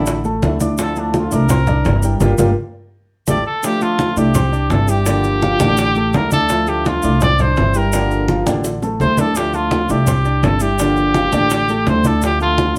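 A sultry, nostalgic Cuban son and guajira groove opens on a punchy, vintage-toned trumpet that carries the melody up front with a light vibrato, taking a solo over the first 3.6 seconds. Around it, a thumb-plucked flamenco guitar plucks out the accompaniment, a dusky grand piano spills long-sustaining arpeggios with its action noise audible, and a woody, thumpy pizzicato upright bass anchors the bottom. Just after the start the percussion settles in behind them: thick-skinned, low-tuned congas struck with hard hands, round, compressed and slightly saturated bongos, and grainy maracas sitting close to the ear. A band accent and drum fill mark the end of the opening section, and another drum fill arrives near 8.5 seconds as the minor-key progression cycles through suspended and added-ninth colours. A moderate studio reverb gives the ensemble a snug room sound in this excerpt cut from a longer piece.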